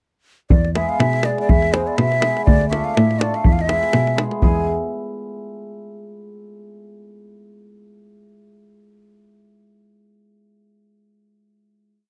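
A dry, close 1970s-style studio sound with light reverb frames this short, fiery Balkan wedding-band piece in 2/4 at 122 BPM, its sixteenths carrying a slight swing. The end-blown ney leads from the front, breathy and tongued with vibrato, spinning song-like motifs between C5 and G#5. Beneath it a single bowed cello plays root-and-fifth bass on the main beats, clear and even, while the davul drives a tight two-stick pattern. The cimbalom enters at 0.8 seconds, its hammered triads shimmering on the off-beats from further back in the mix. The virtuosic phrase moves from E through D minor and back to E, arriving on a final chord at 4.4 seconds.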